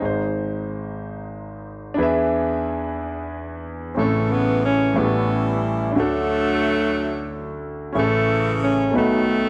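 Hopeful and uplifting, this gospel fragment in 6/8 opens with a warm, deep-bassed concert grand piano playing alone, until a bright, close-miked saxophone section with light vibrato enters at 4.0 s to carry the melody over chords moving from A through D to B7, the whole recording set in moderate large-studio reverb and colored by the worn, warbling pitch drift of old cassette tape.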